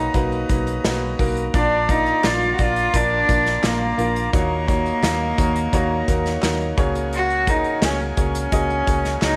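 A nasal, gut-string bowed cello carries the melody up front in this uplifting, hopeful piano-driven pop fragment, backed by a clear, woody upright piano, a reedy single-reed accordion in the background, a dark, foam-muted vintage electric bass, and an acoustic drum kit with a punchy kick and bundle sticks, while very quiet, crisp group handclaps join at 2.2 s inside a moderate echo-chamber studio ambience.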